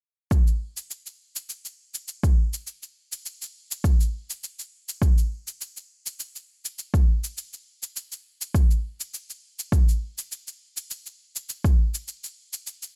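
A deep, overdriven electronic kick drum sits up front in this meditative downtempo excerpt, setting a 102 BPM pulse in 4/4 with a light swing on the sixteenths until it drops out at 11.8 seconds. A produced electronic shaker runs beneath it at a much lower level, carrying on alone until 12.9 seconds. The sound is dry and close, with only a touch of studio ambience, giving the sparse rhythm track a warm, intimate feel.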